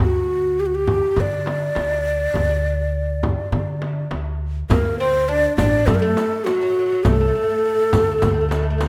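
A breathy, hollow ney carries the melody from the first moment, close and up front with vibrato and tongued notes, over a dark, thumpy pizzicato upright bass on gut strings. This is a hypnotic, longing passage of Arabic maqam ensemble music in D maqam hijaz, moving at a steady 102 BPM in a straight 4/4, cut from a longer piece. A crisp metal-shell darbuka joins at 0.4 seconds, sitting distant in the background, and a small, bright frame drum played with soft hands follows at 0.9 seconds, close and dry. At 4.7 seconds a new section begins as a mellow, woody oud adds a deep, plectrum-plucked second line on its fretless double strings, while a riq with dark jingles enters quietly behind the ensemble. A moderate recital hall reverb gives the group a sense of space around the prominent ney.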